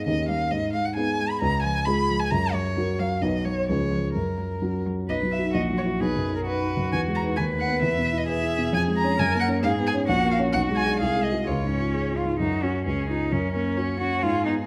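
An expressive, up-front violin carries the graceful melody with vibrato and portamento over dark, mellow grand piano accompaniment and a rich, smooth cello second line in this lively, quick classical-period piano trio passage at 132 BPM in 2/4, which moves from F# major to B major at 5.1 seconds and back to F# major at 8.7 seconds, set in a moderate recital hall reverb captured with close, detailed microphones.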